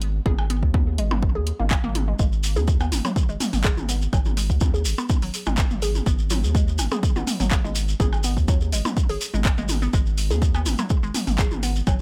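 A dry, close-sounding cut from a longer minimal techno piece, hypnotic and cool in mood, built on a punchy, overdriven electronic kick and a deep, saturated sine sub bass that both sit up front, the bass carrying a sidechain pump. Around them, a house kit adds handclaps and bright, overdriven hats, while electronic toms and percussion blips, re-recorded in a small room, carry a tape echo. A hollow, nasal square-wave pluck with a detuned, bouncy edge plays the riff through chorus and dub echo with its own sidechain pumping, and a grainy, compressed shekere joins at 2.2 seconds.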